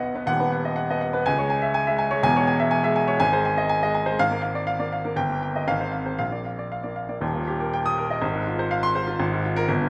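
Sparkling and brilliant, this classical virtuoso piano study moves at 122 BPM in 2/4 with a free, rubato feel, tuned to A4 = 443 Hz and settling into Eb major from 3.2 s after opening on B/D# and C#m harmonies. A clear, open baby grand plays alone from start to finish, spanning D#1 to Eb6 with long sustain and an up-front presence, set in a moderate recital hall ambience. Cut from a longer piece, it shifts into a new section at 7.2 s, where Eb, Fm/Ab and Bb5/Ab chords carry it to the close.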